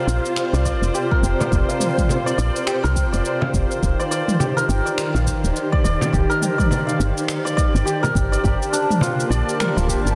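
A swung 104 BPM groove in 4/4, built from a deep electronic kick, an organic electronic kit of finger snaps, shaker and toms with a soft-clipped snare, and a small, bright frame drum entering at 1.4 seconds, drives this meditative organic downtempo excerpt, where a round, woody FM bass with tube saturation and sidechain pumping sits up front beside shimmering santur arpeggios through tape echo, over dark, bowed studio strings holding sustained chords from Fsus4 to Eb6 and on to Gmadd9 at 8.4 seconds, all set in a lush hall reverb with a dense, heavily limited master.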